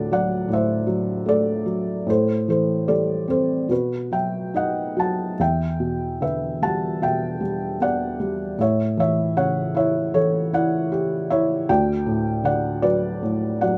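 Wistful and dark, this lyrical classical piece is carried by a lone felt-muted upright piano, heard as a short passage cut from a longer work. The piano's thick felt gives it a soft, muted tone, and it sits up front in an intimate, close setting. The playing moves with a flexible rubato over a 4/4 metre, spanning D2 to A5. The harmony passes through D7, Am7, B and Em7 before settling toward A7 at 8.6 seconds and D at 11.7 seconds. A moderate studio ambience gives the instrument a gentle sense of room across its 13.8 seconds.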